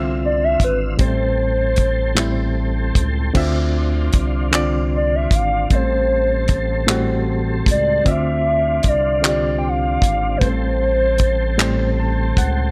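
Studio ambience surrounds this short cut from a slow R&B piece in six-eight, moving at 51 BPM in D minor with a yearning, sultry mood. A barky, reedy electric piano carries the accompaniment with light overdrive and a fast tremolo, while a clean tonewheel organ holds sustained chords beneath it through chorus vibrato and a slow rotary speaker. A smooth synth bass with a dark, ring-modulated sawtooth edge and fast attack sits up front in the low register. From 0.3 seconds a hollow, woody clarinet-like synth lead sings the melody, softened by chorus, vibrato and tape echo. A damped 70s drum kit, dry with a tight kick and rolled-off top, enters at 0.6 seconds with hi-hat, handclaps and crash cymbal. The harmony sways between Dm9 and Am7, and the electric piano closes with a fill at 11.6 seconds.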